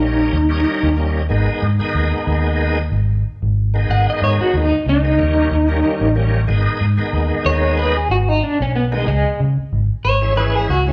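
Straight-eighth soul blues at 93 BPM in G# minor, smoky and mournful, with a dark, slightly broken-up electric guitar through a small old amp carrying the lo-fi, compressed tremolo melody up front and stepping into a solo at 6.5 s, a bright, shouting tonewheel organ with key click, chorus vibrato and a slow rotary speaker filling out the accompaniment, and a round, punchy, foam-muted fingered bass anchoring the low end, all captured as a band playing live in one room with a moderate large studio reverb across a brief passage cut from a longer piece that moves over D#7, G#m and C#m.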